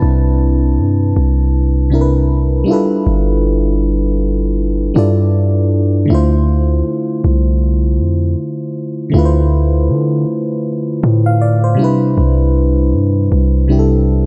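A glassy FM electric piano with a bell-like attack and a noise layer provides the accompaniment in this contemporary R&B excerpt, its full-bodied chords thickened by chorus as they move from Cmaj9 through G13 and Dm9, returning to Cmaj9 at 11.8 seconds. Beneath it, a deep, sine-toned 808-style bass holds long, decaying notes, sitting a little louder than the piano and equally up front. At 79 BPM in D dorian, with a light 16th-note swing and soft reverb, both parts stay mellow, and the mood is longing and sensual.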